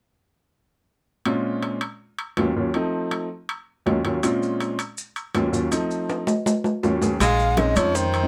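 A moderate studio room gives this fiery, driving Afro-Cuban jazz passage a close, present sound. A grand piano with a natural tone carries the accompaniment from 1.3 s, joined by ringing metal-shell timbales, and grainy, band-limited maracas enter faintly at 4.2 s. A drum fill leads into a new section at 7.2 s, where the rest of the band arrives. A breathy bamboo shakuhachi takes the melody with vibrato and tongued notes, while a bright baritone saxophone adds a scooped, jazz-style second line. Underneath, a woody, growly pizzicato upright bass sits up front, and very quiet congas played with hard hands and tight, high-tuned bongos fill out the percussion in this fragment of a longer piece.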